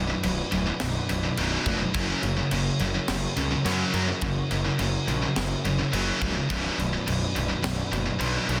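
A dense, heavily limited modern master frames this dark, epic heavy metal excerpt at 106 BPM in B harmonic minor, felt in half time, where a growly, fuzz-soaked picked electric bass sits up front beneath two scooped, high-gain distorted guitars playing riffs in the background, a full pipe organ principal chorus holds sustained chords in romantic voicing, and a polished acoustic metal drum kit with bright cymbals, a high-tuned snare and a tight kick enters at 0.2 s in an airy big room as the harmony moves from Bm to F# and back to Bm.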